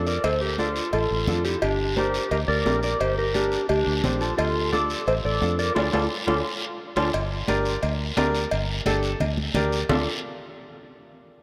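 Cumbia with a passionate, driving pulse, cut from a longer piece, where a dark, clean hollow-body jazz guitar with analog chorus carries the melody over a mellow, breathy clarinet second line until both drop out near 7.1 seconds after a band accent and drum fill, while a clear, woody, slightly detuned upright piano, a round, up-front fingered electric bass, a raspy guiro, and background congas and ringing cowbell and timbales keep going through a dreamy mix soaked in plate reverb.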